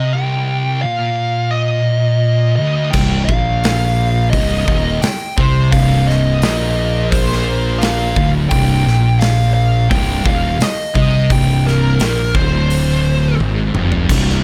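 Brooding and ominous, this stoner and doom metal excerpt moves at a straight 86 BPM in 4/4, resting on a C minor chord. Two thick fuzz guitars sit in the background from the start, both picked and dark, grinding out a low riff, while a fuzz lead guitar carries the melody up high, its distorted tone shaped by wah and trailed by delay until 13.4 seconds. At 2.9 seconds a fingered electric bass and a big rock drum kit come in up front, the bass growly and overdriven with tube saturation, the kit offering a punchy kick, a medium-tuned snare, toms, hi-hat and bright crash cymbals in an acoustic studio room. A drum fill closes the passage at 13.4 seconds. The recording is dry, with little reverb, and it sounds cut from a longer piece.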